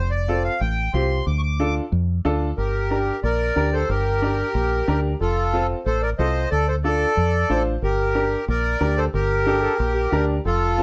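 An up-front, reedy accordion carries the melody from the first moment of this passionate, danceable Latin excerpt in G minor, its smooth tone colored by a slow beating. Beneath it, a deep dub fingered electric bass sits close and punchy, its round, foam-muted sound dark and direct. At 0.3 seconds a clear upright piano joins in accompaniment, intimate and woody with short sustain and audible action noise. The straight 4/4 groove moves briskly at 183 BPM over a cycling F, Dm and Gm progression. Near the end, at 9.5 seconds, a bright, close-miked trombone adds a brief pop-style second line with vibrato, and a light reverb gives the whole a touch of space.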